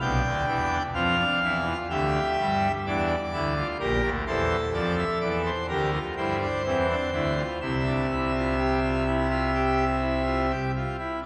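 A full pipe organ sounds up front from the opening second, its mixtures giving a brilliant, majestic tone and romantic voicing as it plays a lively, elegant, baroque-style three-part fugue at 63 BPM in 4/4, spanning Bb1 to G5 through Bdim, Em7/D, Gm/Bb and C in an 11.3-second passage cut from a longer piece, all bathed in a cathedral reverb with a 4.0-second decay.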